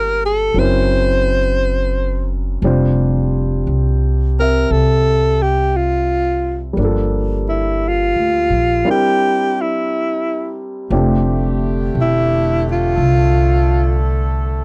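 Romantic and late-night, this slow swung jazz ballad in F major at 58 BPM sets a breathy, subtoned alto saxophone with vibrato up front over a warm grand piano and a woody, thumpy pizzicato upright bass on gut strings, until a mellow saxophone section enters with soft sustained chords at 10.9 seconds as the alto takes a solo, all captured in a dry, close 1970s-style studio sound.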